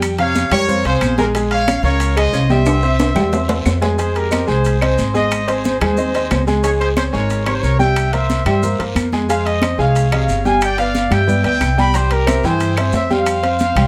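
A mellow, tight trumpet section carries the melody up front from 0.2 seconds, its punchy attack rounded by a smooth top and light vibrato. Beneath it, a clear, worn upright piano, slightly detuned, with audible action noise and long sustain, supplies an intimate accompaniment, while a dark, thumpy pizzicato upright bass on gut strings sits up front. The fiery, danceable salsa groove comes from ringing metal-shell timbales, high-tuned congas played with soft hands, woody claves, a raspy, band-limited guiro and grainy maracas, with the congas, claves, guiro and maracas set in the background. A drum fill from 2.7 to 4.0 seconds leads into the second section, where the harmony passes through Fm7, C7 and G7 before landing on Fsus2. Moderate studio reverb gives the ensemble a polished sense of space in this short cut from a longer piece.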